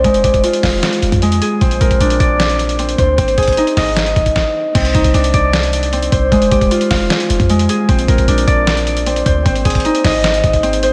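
Eerie and brooding, this half-time trap cut from a longer hip hop piece hangs in a dreamy mix soaked in lush hall reverb. An acoustic Celtic harp, thumb-plucked and ringing, sits up front with arpeggios softened by a low-pass filter and trailed by delay, moving through add9 minor and major colours such as Fmadd9, Bbadd9 and Ab. Beneath it, a clean 808-style bass drops deep, boomy sine notes with a fast attack that decay into darkness. The lo-fi sampler-style drum kit is compressed, pitched down and muffled, with a thumpy kick, medium-tuned snare, hi-hat and crash cymbal carrying a tape-warm character up front. A brief stop at 4.4 s gives way at 4.8 s to a second section that opens on Cmadd9 before the cycle returns.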